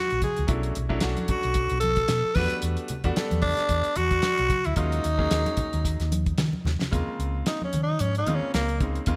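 A gritty, growling tenor saxophone opens this nocturnal, slick electric jazz fusion piece at 112 BPM, up front with a raspy, breathy tone and scooped notes. It is joined almost at once by a round, dark hollow-body bass, a damped 70s drum kit with a fat snare and tight kick, and hard-hand congas in the background, before a brilliant grand piano with short sustain enters at 0.5 s to accompany through Bm11, Em11 and Ebm11 over a swung 16th-note feel. After a drum fill, the saxophone takes a solo from 6.9 s over an Eb13sus4, with light reverb, a small room ambience and bright 1980s-style digital production.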